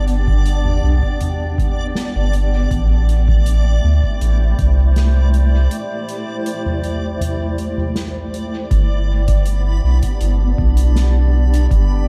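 Ambient dub at 80 BPM in 4/4 and G major, this peaceful, spacious passage is cut from a longer piece and sits in a dark, warm studio reverb. A deep, round sub bass sits up front, its soft triangle-and-square tone holding the low end from G1 to D2 throughout. Above it, a granular cloud pad sustains blurred, evolving chords, moving from G to Am7 at 2.7 seconds and back to G at 8.7 seconds, while a reversed, swelling texture adds a bright, dreamy, detuned shimmer high in the register. A soft-mallet acoustic kit with a fat snare, hi-hat and toms plays in a big-room sound, and an analog electronic kick with a tape-like deep thump stays in the background. A break runs from 5.7 to 8.7 seconds before the closing section returns to the home chord.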